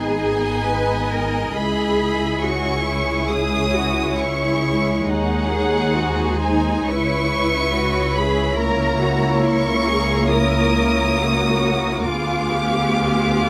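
A rubato 4/4 pulse at 68 BPM carries this slow, melancholic and yearning romantic movement for string orchestra, cut from a longer piece and played throughout its 13.5 seconds by the full ensemble. The first violins sing the high melody with soft attacks, vibrato and expressive portamento, set slightly distant, while the second violins hold a smooth, close inner line and the violas add an even, distant accompaniment beneath. The cellos sound focused and lush, and the double basses sit up front with an expressive low foundation, all bathed in light reverb as the harmony moves from G#m through C#m7 and G#7/D# toward a darkening Ddim7.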